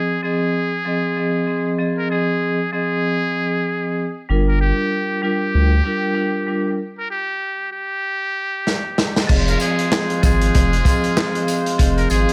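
Moody, tough boom-bap hip-hop at 96 BPM in F dorian with a swung sixteenth feel, this excerpt opens with a buzzy metal-muted trumpet melody over dark, ringing hard-mallet vibraphone chords with a slow motor vibrato and a cassette-tape tint, then a deep saturated sub bass joins at 4.3 seconds. During a stop, a gritty breakbeat kit enters at 8.7 seconds with a drum fill. Distant, roomy horn-section stabs with delay arrive at 9.3 seconds as the chords move back to Fm7, and a jingly tambourine sits in the background.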